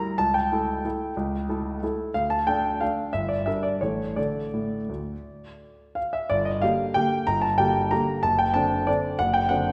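A clear, worn grand piano sits up front in a reverberant recital hall, playing a nostalgic, elegant classical waltz in 3/4 with free rubato at roughly 164-197 BPM and tuned to A4 = 435 Hz, moving through D minor harmonies before turning to G minor at 6.3 s in this brief excerpt cut from a longer piece.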